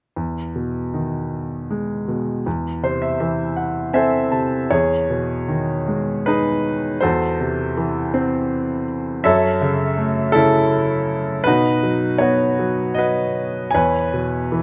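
Classical solo piano in a lyrical, peaceful mood, moving in an unhurried three-beat metre with rubato. A clear baby grand plays alone from 0.2 to 14.6 seconds, up front and natural in tone with long sustain, spanning E2 to A5, with a fill between 2.5 and 4.7 seconds. Close, detailed miking and light reverb frame the calm harmonies as they shift from Emaj7 through F#m7 and B to a closing E6 in this short passage cut from a longer piece.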